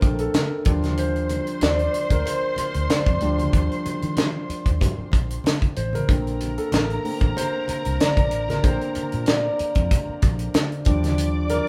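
A concert grand piano leads this lush, romantic slice of 1970s-style soul, taking a solo across its full 11.7 seconds with intimate, up-front tone, deep bass, long sustain and audible action noise. Beneath it, a tight funk drum kit sits close in a small room, its high-tuned snare, tight kick and hi-hat carrying a gently swung sixteenth-note feel in 4/4. A vintage fingered electric bass, foam-muted and amped, supplies a round, punchy, dark low end, while congas with thick, low-tuned skins sit in the background of a larger space. A muted string section bowed con sordino adds a veiled, distant second line with soft attacks and vibrato. The harmony drifts between Bbmaj9 and Ebmaj9, and a light reverb gives the band the feel of playing live together in one room.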